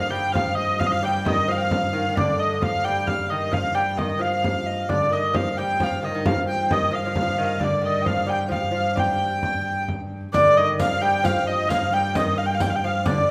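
Medieval dance in a driving, ancient-sounding 6/8, with a nasal, wheel-bowed hurdy-gurdy up front carrying the melody over a bright, reedy tenor recorder and a delicate fingerpicked lute on second lines, a ringing viola da gamba drone, a deep frame drum, and a riq whose jingles join in the background at 10.3 seconds, all set in a wet recital hall reverb in this excerpt cut from a longer piece.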